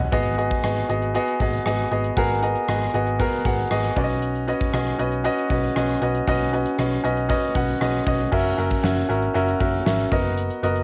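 Dramatic and urgent, this short cut from a longer piece of 1980s-style pop moves at 117 BPM in a straight 4/4. A clear baby grand piano sits up front, providing accompaniment between B3 and B5 throughout, its tone present and polished. Beneath it, a hollow-body short-scale electric bass, picked and amped, holds down the low end between F#1 and B1 with a dark, round sound. The gated drum kit comes in at 0.1 seconds with a fat snare, tight kick, rim clicks, hi-hat and bright crash cymbals in an airy stone-room sound, its tone carrying a cassette-tape character. The harmony moves from G#m7 to Badd9, then shifts into a new section at 8.3 seconds on F#7 before landing on Bmaj7/F#. A light reverb and the texture of a home cassette recording frame the whole track.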